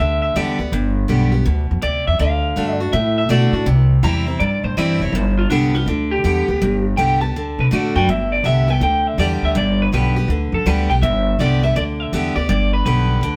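Played live by a trio in a stone room with moderate reverb, this rowdy, retro rockabilly excerpt swings from start to finish. A twangy, slightly broken-up electric guitar through a small old amp takes the lead, soloing over the first 8.1 seconds, while a bright, fresh-stringed dreadnought acoustic guitar picks a full-bodied accompaniment. Underneath, a woody, thumpy upright bass with gut strings sits up front, its dark pizzicato tone anchoring the band.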